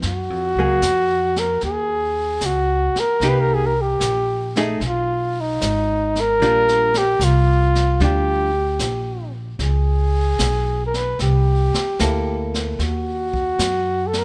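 A slow 4/4 swing at 75 BPM, with a gentle lilt on the eighth notes, sets a tender, late-night jazz ballad mood in this excerpt cut from a longer piece. The brushed drum kit sits distant in a roomy studio space, its high-tuned snare, hi-hat and tight kick softened by a rolled-off top. The upright bass is plucked and up front, its steel strings and woody, warm tone anchoring the low end. A dark, clean hollow-body electric guitar picks compressed chords through voicings such as F#maj7sus2, Cm7, B6 and C13 before dropping out at 12.8 seconds. Above it all, a mellow flugelhorn carries the solo melody up close and present, shaded with a light vibrato. A light reverb gives the ensemble a soft glow.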